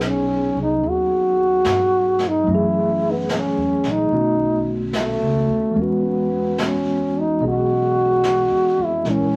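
Vinyl crackle and light reverb surround a slow jazz ballad from its first moment, as a breathy, mellow trombone carries the melody over a clean tine electric piano, a pizzicato upright bass and a brushed drum kit, all entering together at 0.0 seconds. The mood is intimate and melancholic, moving at 73 BPM in 4/4 with a gentle swing on the eighth notes. Placed up front as the solo voice, the trombone has a vintage jazz character, colouring its lines with vibrato and scooped notes in a middle register. The electric piano sounds as if heard through its own built-in speakers and sits beneath the horn, while the woody, steel-strung bass sits lower in the mix. The brushed snare and hi-hat come from a small room, sounding distant and roomy behind the other parts. The harmony moves through B6, F#m9, B9 and E6 in this 9.4-second passage cut from a longer piece.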